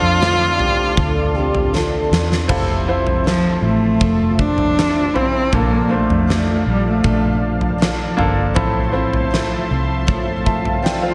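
Heartfelt and emotional, this short cut from a longer pop ballad moves at a steady 79 BPM in F major with a straight feel. A bowed cello with vibrato leads the melody up front until 7.6 s, its focused, boxy tone touched by digital delay, while a dark French horn section adds a distant, roomy second line in classical style from 0.2 s to 2.5 s. A clear concert grand piano with deep bass and short sustain carries the accompaniment, joined by a smooth, detuned sawtooth analog pad with soft attack and chorus, and a full-bodied jumbo steel-string acoustic guitar picking arpeggios through digital delay in the background. Underneath, a vintage foam-muted fingered electric bass sounds round and amped, and a huge arena drum kit sits up front with bright cymbals, a fat snare and a punchy kick, playing a fill just before the harmony settles from Dm7 onto Fmaj7 at 2.5 s. The progression then passes through Bbmaj7 and Fmaj7/A as an electronic swell enters in the background from 10.0 s, all framed by light reverb and studio ambience.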